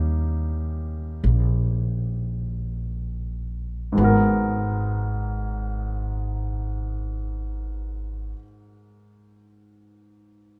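Wistful and smoky, this jazz ballad fragment drifts in free time in G# minor, tuned a touch high at A4 = 441 Hz, slowing over its first 4 seconds on a D#7 chord before settling onto G#m9. A polished, present grand piano accompanies from up front, beside a woody, growly pizzicato upright bass with bright steel strings. The bass stops at 8.3 seconds, leaving the piano alone under light reverb until 10.6 seconds.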